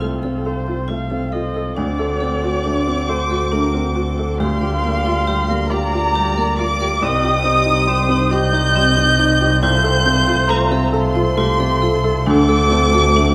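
In a rubato 6/8 lilt at 46 BPM, this melancholic, longing neoclassical fragment sets a felt-softened upright piano, a veiled con sordino viola, a reedy, breathing pedal harmonium in the background and a ringing hard-mallet vibraphone with fast motor vibrato over a close, dark muted double bass, while from 1.7 s a soft-attacked chamber violin section carries the up-front melody over chords moving from F/C through D7, Gm7/D and Cm, all bathed in a moderate scoring-stage reverb.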